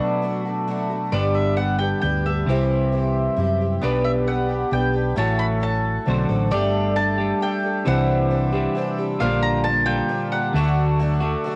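Hopeful and open-road in feel, this home-recorded cassette rock excerpt in 3/4 sets a woody mandolin melody with tape echo over a shimmering, octave-doubled twelve-string acoustic guitar, a twangy, up-front clean electric guitar riff and a mellow accordion holding chords in the background, with a round, dark hollow-body bass arriving at 1.1 s and a faint, lightly overdriven reed electric piano appearing from 3.8 to 6.5 s, all set in a lightly reverberant studio space.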